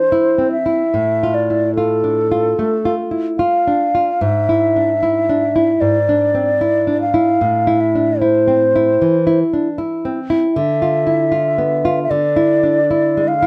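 Flute and nylon-string guitar begin together in this yearning, melancholic romantic duo in A minor, moving at a rubato 75 BPM in 4/4. The silver concert flute sings the melody up front with a hollow, airy tone, tongued notes and vibrato, while the fingerpicked classical guitar accompanies through chords such as Dm/A, E7/G#, Bdim/D and E7/D. The sound is close, detailed and dry, and the passage is cut from a longer piece.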